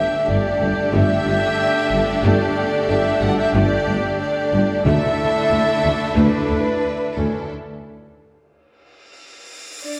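A majestic, heroic cinematic passage opens at 92 BPM in a straight 4/4, with a lush violin section carrying the melody over a full orchestra voicing a Gsus2 chord, cut from a longer piece. An airy, distant flute group and a second, softer violin line sit beneath it, while a very quiet viola section, a background trombone section with a bright edge and an intense string section fill out the sustained harmony. The dark French horn section sits most prominently in the blend, holding its chords through the full 10.0 s, and a mellow tuba, focused cellos and expressive double basses anchor the low end. At 4.9 s the harmony shifts to Dsus2, marked by a brief timpani stroke played with medium mallets on calf heads. Most of the orchestra drops away at 7.5 s, leaving the violin melody and horns ringing in a wet scoring-stage reverb heard from further back in the room, until a huge, up-front cymbal swell arrives at 8.9 s.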